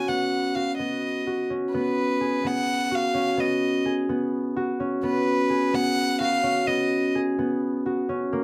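A moderate studio reverb gives this short excerpt of contemporary chamber music a modest sense of room, with both instruments sitting up front. The mood is pensive and restless, carried by a brisk 7/8 metre at 255 BPM counted in eighths, in G# dorian with a straight feel. A concert harp supplies arpeggios in its middle register, its thumb-plucked strings sounding mellow and ringing, and it plays until 8.4 seconds. Above it, a single bowed violin sings the melody with a rich, pure tone, soft attacks and a floating sul tasto colour, ending at 7.1 seconds so the harp briefly carries on alone. The harmony moves from Badd9 to G#m7 at 1.7 seconds, and the fragment ends as though cut from a longer piece.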